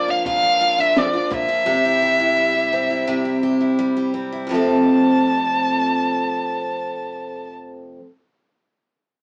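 Acoustic pop in F major at 85 BPM, carefree and heartfelt, heard as a short cut from a longer piece. A focused, boxy violin carries the melody with vibrato over a bright, full-bodied picked steel-string guitar, while a compact cocktail kit with a punchy kick, a high-tuned snare and a shaker plays only from 0.3 to 1.5 s. The chords move from Bb to C and settle on F at 4.5 s, and the band sounds as if playing live together in one room, with wet reverb and a small-speaker quality.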